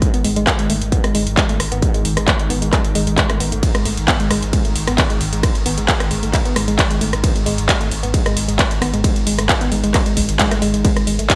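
A swarming, nasal drone sits in the background from the start of this driving, hypnotic peak-time techno fragment at 133 BPM in G# phrygian, bathed in lush chorus and its own reverb with sidechain pumping, alongside a distorted, layered electronic kick and an up-front kit of handclaps, rim clicks, metallic hi-hats and ride cymbal with gated reverb. At 0.1 s a woody, wave-folded pluck enters with a dark, warbling riff colored by cassette tape, chorus and digital delay, and at 0.2 s a thick, saturated sub bass joins on G#1 under a low-pass filter. The bright 1980s-style digital production adds light reverb overall, with small-room ambience on the drums.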